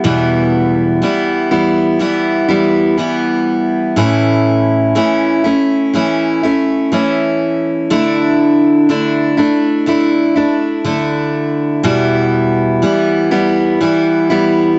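Pop in E dorian at a slow 61 BPM, this heartbroken, melancholic excerpt features a lone picked steel-string acoustic guitar, full-bodied and up front with a dreadnought's depth and a cassette-tape character, moving through Em, A, Dsus2 and back to Em in a wet booth on a home cassette recording whose dull top end rolls off above 8.0 kHz.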